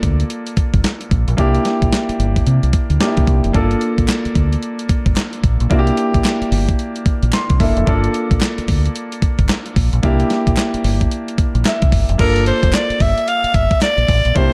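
A bouncy, slick new jack swing R&B cut in G dorian at 111 BPM, swinging on the sixteenths as a clear, intimate grand piano comps between Gm7 and C9 over a thumpy, crisp 8-bit drum machine and a deep, round fingered electric bass. A very quiet group handclap joins at 4.1 seconds, the piano adds short fills, and a raspy, gritty alto saxophone takes the lead at 12.2 seconds. The dark production sits in light small-room reverb, with some lossy compression artefacts.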